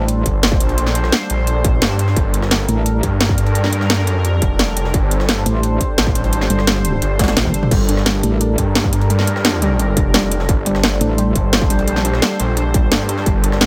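Aggressive and dark, this technical drum and bass cut from a longer piece runs at 173 BPM in a straight 4/4, rooted in G minor on a Gmadd9 chord. A bright, evolving pad built from detuned sawtooth with a resonant filter swell holds sustained chords under chorus and sidechain pumping from the start. A distorted electronic kick arrives at 0.3 s alongside an up-front detuned saw bass, thick and lush with overdrive and chorus. A metallic, FM-driven wobble bass cuts in only in short bursts, most fully from 5.5 to 8.6 s. The main kit brings a cracking snare, metallic hats, rim clicks, toms and crashes with a tape-tinged, small-room presence, while a gritty, pitched-up jungle sampler kit with a high-tuned snare sits far back with overdrive and filtered hats and snare. After a drum fill at 7.2 s, a warbly, lo-fi pluck enters at 7.7 s with arpeggios through subtle chorus, digital delay and pumping, and the whole mix stays dry and loud.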